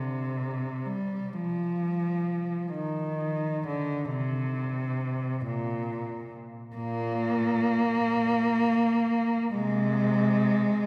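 A single bowed cello carries this mournful, yearning classical fragment, playing alone from 0.0 to 10.9 s in a range from Bb2 to Bb3. Its tone is rich and smooth, with vibrato and an even, up-front presence that keeps the one player close to the ear. The phrasing moves freely in 6/8, with uneven beats and expressive rubato that let each line breathe at its own pace. A wet church reverb with a 3.6-second decay surrounds the instrument, and the room is heard from further back, giving the sound a spacious, lingering halo. Tuned slightly below standard pitch at A4 = 437 Hz, the passage is cut from a longer piece.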